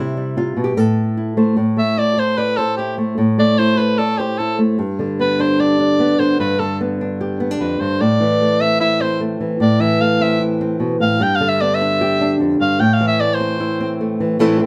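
An edgy soprano saxophone features in this dramatic, passionate flamenco passage, cut from a longer piece, entering at 1.8 seconds and playing a classical-style solo with light vibrato, present and up front, ranging from G4 to G5 until 13.9 seconds. Alongside it, a dark acoustic flamenco guitar carries the melody from the very start, fingerpicked and up front, spanning F2 to D5, with audible finger squeak. The tempo is 150 BPM in a straight 4/4, set in A minor and tuned to A4 = 442 Hz. After a brief opening chord of C, the harmony settles on Am and moves between Am and G, closing on Am. A moderate studio reverb gives the two parts a sense of room.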